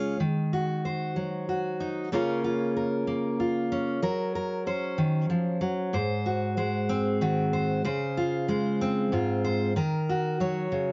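A fingerpicked steel-string acoustic guitar opens this short folk fragment alone and carries it to the end at 10.9 seconds, ranging from Ab2 up to Db5. The mood is peaceful and gently warm, moving at 63 beats per minute in an unhurried 6/8 with a straight feel. The jumbo guitar sounds bright and full-bodied and sits up front, with finger squeak audible along the strings. Its opening passage moves from Ebm to Bbm/Db, and from 4.0 seconds a second passage travels through Gb, Ab7 and Dbmaj7 before settling back on Ebm. Light reverb surrounds the instrument, and the overall production is dark and soft at the top, capped below 7.5 kHz.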